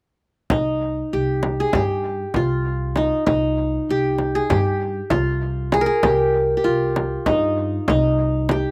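From 0.5 s a bright-edged, fingerpicked qanun leads the melody over a woody, growly pizzicato upright bass and a deep, dry frame drum struck with hard hands, giving this hypnotic, soulful Turkish makam excerpt in C minor a straight 9/8 pulse at 195 BPM (eighths), with the qanun and bass up front and light reverb in an outdoor setting.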